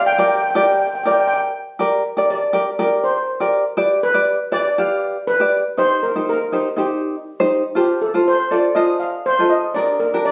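Calypso in G minor at 121 BPM with a tense, intense mood, this short cut from a longer piece sets a shimmering, mellow steel pan lead struck with soft rubber sticks, taking a solo from 1.8 seconds, over a bright, thumb-plucked tenor ukulele, both up front in a small room with moderate reverb and a phone-recorded feel, moving through Gm, G7, Cm7 and F7 before returning to Gm.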